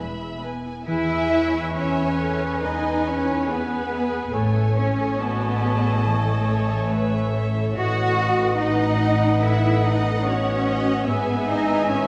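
Heard from further back in a concert hall with a wet reverb, this orchestral classical passage unfolds with yearning, solemn rubato and uneven beats. A bowed violin section carries the melody high up, smooth and in the background, while a second violin section with a soft attack and a dark, very quiet clarinet trace second lines. Violas give rich, focused accompaniment, a ringing harp plays arpeggios, and the cellos and an up-front double bass section anchor the bass with vibrato. At 0.9 seconds an airy, hollow flute, an oboe with light vibrato and a distant, roomy French horn section join, the horns holding sustained chords. The harmony moves from E through Amaj7 and B7/A to E/G#, and the excerpt is cut from a longer piece.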